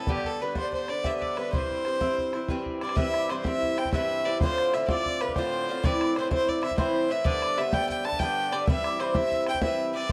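A clear, earthy fiddle carries the melody of this lively, cheerful Celtic slip jig in 9/8 from the start, with a bright, ringing harp in the background and a very quiet, reedy accordion sharing a second line, while a metallic, double-strung bouzouki and a tight, damped bodhran sit up front in a dry, close 1970s-style studio sound as the chords move from G and C to Dm7 around 4.4 seconds and then Am in this cut from a longer piece.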